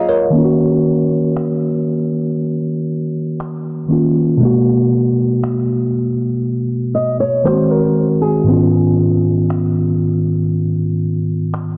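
A worn, slightly out-of-tune tine electric piano sits up front and carries this tender, romantic contemporary R&B excerpt at 59 BPM in F# major, moving through F#6, G#m9, G#7 and C#9/G# chords. Gritty, compressed sampler-style finger snaps with soft clipping on the snare enter at 1.4 seconds, and a fingerpicked flamenco guitar with fresh strings, finger squeak and tape echo returns for arpeggios from 6.9 to 8.7 seconds. The whole recording is blown-out and overdriven, darkened by a low-pass filter sweep and set in light digital ambience.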